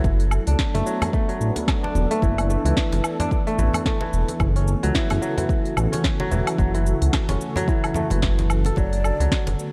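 This mystical, earthy organic downtempo excerpt moves at 110 BPM in 4/4 with a swung sixteenth feel. It opens on a D6/F# chord as crisp, fingerpicked kora arpeggios ring through digital delay over a detuned, chorused analog pad and a smooth, up-front sawtooth synth bass, both sidechain pumping, alongside an overdriven, deep electronic kick. A produced afro-pop kit adds a sharp snare, smooth hats, shaker and woodblock, very quiet congas sit close and dry, and at 8.8 seconds a breathy, end-blown ney sounds a D5 with vibrato, all within a dark production and light reverb.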